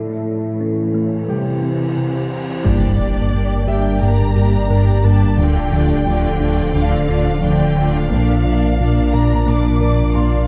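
This tense, vast cinematic excerpt at 88 BPM opens on a moody, detuned analog pad with chorus, a very quiet tine-like synth pluck playing arpeggios, a rich bowed cello section holding the bass and faint, brilliant grand piano texture. A huge, bright cymbal swell rises from 1.8 seconds into an impact at 2.7 seconds. There the orchestral and electronic score opens into its fuller second part over chords moving from G minor to D minor and B-flat: lush violins carry a focused, vibrato melody above a second violin line, expressive violas with portamento sit in the background, a smooth gliding synth bass plays a riff, and a deep, full sub bass sits up front, all within a moderate scoring-stage reverb and a dark, warm production.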